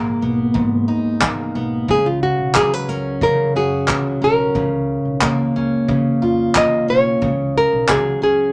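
A moderate studio ambience gives this short acoustic pop clip, cut from a longer piece, a natural sense of space, with the guitars sitting up front. At a straight 90 BPM in 4/4 and in Db mixolydian, the mood is sunny and carefree, moving through Abmadd9, Dbsus4 and Bbm before returning to Dbsus4. A fingerpicked, classical nylon-string guitar carries the melody between F4 and Eb5, while a full-bodied, jumbo steel-string acoustic guitar picks a warm accompaniment beneath it. A woody, dark pizzicato upright bass stays in the background. A vintage brush drum kit with a roomy sound, a punchy kick and a rolled-off top enters at 0.6 s, with handclaps joining the brushes and kick, and it stops at 8.0 s.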